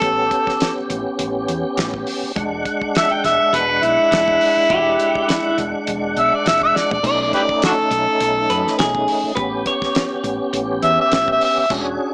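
An overdriven harmonica leads this rollicking, soulful straight-eighth soul blues, its gritty, amplified tone sitting up front with light vibrato, tongue slaps and scooped notes in a jazz-style solo. A tonewheel organ fills in the accompaniment with a full, lightly overdriven sound, turned by chorus vibrato and a slow rotary speaker. Underneath, a woody fretless electric bass gives a dark, round, hollow-body tone through a lush chorus, while a damped 70s drum kit keeps things dry with dark cymbals, a fat snare and a tight kick. At 4.7 seconds an electric guitar through a small old amp adds a bright, twangy, slightly broken-up second line, picked and shimmering with tremolo. The band moves through A7, E7 and B7, with a drum fill at 6.7 seconds and a stop at 11.7 seconds closing this cut from a longer piece, all set in a moderate plate reverb and studio ambience with a small-speaker character.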